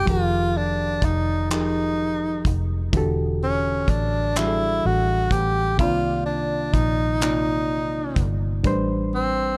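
Yearning and late-night in mood, this slow six-eight R&B piece moves at 42 BPM in dotted quarters with a straight feel, tuned slightly low to A4 = 438 Hz and heard as a short cut from a longer work. A breathy tenor saxophone carries the melody up front, close-miked and intimate, its soft attack, whispered tone and vibrato giving the solo a jazz-style tenderness. Beneath it, a reed electric piano supplies the accompaniment with a bright, worn, lightly overdriven sound heard through its built-in speakers and slightly out of tune, moving through Fm11, Em11, Cm11 and Am11. A vintage fingered electric bass, foam-muted, round and punchy, anchors the low end. A damped 70s drum kit sits dry and up front with a tight kick, hi-hat and handclaps, entering at 0.1 seconds and stopping at 8.9 seconds. The whole is framed by small room ambience in a dark, warm production.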